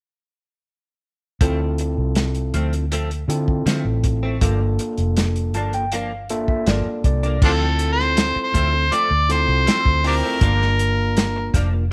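Set in light reverb, this short cut from a longer piece is smoky, soulful straight-eighth soul blues in D minor at 80 BPM, moving between Dm7 and Gm7. From 1.4 seconds, a dry, muffled soul drum kit with dark cymbals and a tight kick sits up front beside a round, punchy foam-muted electric bass. A bright, gritty tine electric piano plays accompaniment through a combo amp and adds a fill at 5.2 seconds, while a clean, direct-recorded electric guitar places compressed picked stabs under lush chorus and slapback echo. At 7.4 seconds an amplified, overdriven harmonica takes the solo melody up front, with slapback echo and plate reverb.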